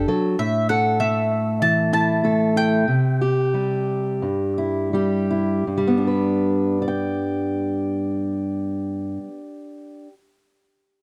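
This dark, warm-sounding folk recording sits in a moderate studio room, cut from a longer piece and carrying an uplifting mood. A mandolin carries the melody for the first 4.9 seconds, its mellow, round double strings picked high in its range and wrapped in plate reverb and analog delay. Beneath it, a fingerpicked acoustic archtop guitar plays accompaniment across a broad span, sitting up front with fresh strings and audible finger squeak. The pace gradually slows from 0.4 to 5.7 seconds as the harmony moves from A5 to C and settles on G. Once the mandolin falls away, the guitar carries on by itself into a second section until 10.1 seconds.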